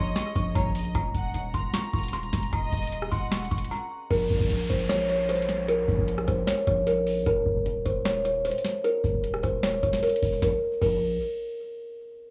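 This eerie, brooding trap excerpt opens with a woody, hollow kalimba carrying the melody, joined by a rich, bowed studio violin section on a second line and a long, sine-like 808-style bass that hits fast and decays mellowly beneath it. At 152 BPM in a half-time feel, a booming analog drum machine arrives almost at once, up front and dry, with a deep kick, tonal snare, metallic hi-hats, rim clicks and crash cymbal. The violins, with light vibrato and a biting yet smooth-topped edge, drop away at 3.7 seconds for a brief break, after which the harmony moves from B-flat minor and E-flat minor shadings into a B-flat minor add9 colour. An electronic downlifter sweeps through the middle stretch from 4.1 seconds, while the close-miked, thumb-plucked kalimba stays prominent over the sustained bass. Tape echo trails the kalimba, violins and drums, and a moderate spring reverb with small-room ambience gives the echo-heavy mix its haunted air before the chords fall away near the end.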